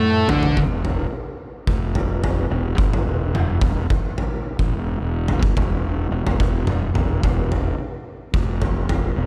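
Two thick fuzz guitars, one up front and one in the background, strike a D5 chord over a barely audible drone of resonant, moving overtones and a drum fill, then fall silent at 0.6 seconds, leaving the round, overdriven fingered bass and the punchy, gritty, oversized low-tuned kit and toms to carry this hypnotic, sludgy stoner-doom passage at 72 BPM with a swung 4/4 feel through to 9.3 seconds in a dark, small-room production.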